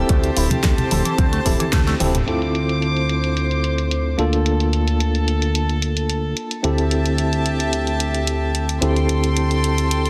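Nu-disco in D minor at 110 BPM, this groovy, sensual cut from a longer piece rides a straight 4/4 pulse under light reverb and a dense, heavily limited modern master. A fat, detuned sawtooth analog bass sits up front with a fast attack and decaying notes, pumping with sidechain alongside a clean tine electric piano whose fast tremolo, combo-amp tone and dub echo fill out the accompaniment. Above them, a soft-attack studio string section holds floating, pure sul tasto chords through a low-pass filter, also breathing with the sidechain. In the opening moments a bright, twangy picked guitar with an envelope filter plays a riff in the background through lush chorus, 12-bit sampler grit and dub echo, joined by a punchy layered electronic kick and soft-handed, thick-skinned congas, all dropping away after a band accent at 1.7 seconds. A drum fill on the filtered pop kit, with its fat snare, rim clicks, hi-hat and toms, leads into the second section at 2.3 seconds. 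Across the excerpt the harmony moves from Am7/D through Dm7 and Bbmaj7/D to D9sus4.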